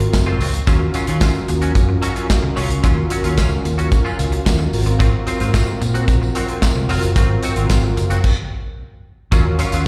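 A slick, late-night early-eighties boogie funk groove at 111 BPM in Eb dorian opens with an up-front drum kit of punchy kick, medium-tuned snare, hi-hat, handclaps and crash, alongside a dark, round, foam-muted fingered bass and a faint, jingly tambourine in the background. A mellow sawtooth synth brass with chorus and slapback echo lays down detuned, sustained chords over an Ab13 and Ebm9 vamp, while a clean, compressed, hollow-body electric guitar picks a riff through ensemble chorus and slapback echo. The band hits a stop from 8.2 to 9.3 seconds in this short excerpt, which is heard through a venue's PA with recital hall reverb.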